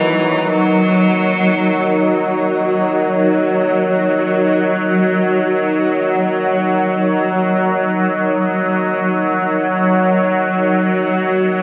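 Drenched in a wet echo chamber reverb with a long, cavernous tail, this echo-heavy dark ambient drone sounds desolate, drifting in free time around a single E-flat minor chord with tuning set at A4 = 441 Hz. Up front sits a swarming, tense drone on Gb3, built from detuned sine tones in unison that warble and evolve with a vintage, granular grain, a slow attack, a long release, its own built-in reverb and a phaser. Behind it, a deep, moody analog pad of detuned sawtooth and triangle waves with a sub octave holds sustained chords from Eb4 to Eb5, softened by chorus and shimmer reverb. Both the drone and the pad last the full 11.6 seconds of this fragment of a longer piece. Alongside them from the very start, a single bowed cello plays a clear, smooth, even melody between Fb3 and Gb3, its vibrato carried off by shimmer reverb and dub echo before it falls silent at 2.4 seconds.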